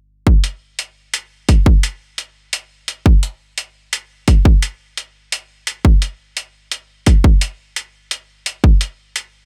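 A hard-clipped electronic kick drum sits up front in this short drum and bass cut, carrying a tape-warm punch from 0.3 to 8.7 seconds. The track runs at 172 BPM in 4/4 with a half-time feel and a light swing on the sixteenths, giving the groove a cinematic, tense edge. An electronic hi-hat joins almost at once, sampler-style and compressed, its gritty overdriven tone shaped by a small-room re-recording, and it stays forward in the mix but quieter than the kick until 9.2 seconds. The sound is dry with little reverb, and a faint mains hum sits beneath the drums. Taken from a longer piece, this fragment holds a single section throughout.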